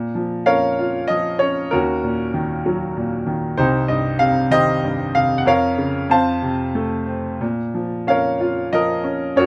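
Classical solo piano in a lyrical vein, this brief passage cut from a longer piece sits in Bb minor and moves in a flexible, rubato 3/4 at around 95 BPM. The mood is brooding yet bittersweet, with the harmony passing from Bbm through Ebm7 and Cm before settling on Bbm/F and F and returning home to Bbm at 7.4 seconds. A baby grand piano carries the whole 9.5 seconds alone, ranging from deep bass at C2 up to A5. Its tone is bright and brilliant, with an open, up-front presence that keeps every note clear. Close, detailed microphones and light reverb give the recording an intimate, finely etched sound.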